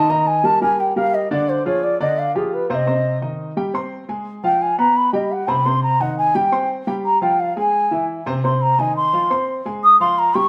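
Jazz with a danceable, sophisticated mood, in which an airy, up-front bansuri with a bamboo, straight tone and rolled-off highs plays an expressive, tongued solo melody across the full 10.5 seconds over natural-sounding baby grand piano accompaniment, moving through rich minor and diminished chords from Ebmaj7 to Fm11 as the band plays live together in a stone room with moderate reverb.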